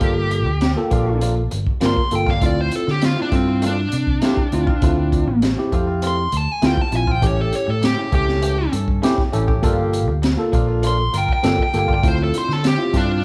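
An overdriven, dark lead guitar solos up front across the whole excerpt, singing smoothly over a smoky, soulful straight-eighth soul blues in D minor at 100 BPM in 4/4. A gritty, crunchy breakbeat kit with a punchy kick and high-tuned snare drives alongside round fingered electric bass, while tine electric piano fills the harmony and a bright, twangy clean guitar adds compressed stabs through Gm7, Dm7 and A7. From 7.2 to 12.6 seconds a mellow jazz-style horn section with vibrato holds sustained chords in the background, all within the light reverb of a band playing live in one room.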